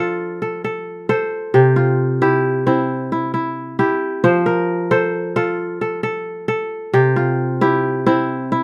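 A ringing, crisp, fingerpicked acoustic kora plays solo and up front in this flowing, hypnotic West African traditional passage in F major, moving at 89 BPM in a straight 12/8 over F and C chords, with a new section arriving at 4.2 seconds, all in a light reverb and cut from a longer piece.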